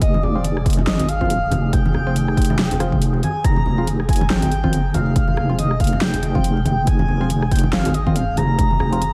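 A deep, saturated wobble bass sits up front in this brooding, cavernous deep dubstep excerpt, its square-and-sine tone given a chorus sheen as it holds the low end of F minor over an F5 chord. The groove runs at 140 BPM in a half-time 4/4 feel with a 16th-note swing, driven by a punchy electronic kick that drops out at 8.7 seconds and a layered dubstep kit with a huge snare, rim clicks and bright hi-hats carrying a tape-like grain. Low-tuned congas played with soft hands join at 0.1 seconds, sitting in the background with a small-room acoustic feel. Above them, a breathy, flute-like synth lead carries the melody with gentle vibrato, lush chorus and dub echo. From 0.4 seconds, a hollow, wave-folded organ stab adds mellow, decaying hits through chorus, phaser and dub echo, while an airy, wind-like tuned noise texture drifts far back with its own reverb. Light reverb, a digital ambience and a layer of vinyl crackle frame the whole mix.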